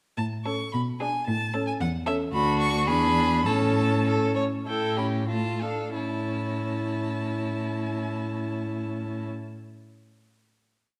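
Graceful and lively, this brief, complete classical-period movement for string quartet in A major moves quickly in 2/4 at 88-114 BPM with a rubato feel, a warm, focused first violin carrying the melody from 0.2 s while an up-front cello supplies pizzicato and sustained bass beneath. A rich, even second violin joins at 0.5 s with chords in the rhythm of the tune, answers at phrase ends and a rocking two-note figure, and a distant viola adds pizzicato accompaniment, rocking figures and sustained chords. The music slows from 2.9 to 6.0 s through a short coda touching A7 and Dm/A, then settles on a final A chord held to the close in a wet recital hall reverb.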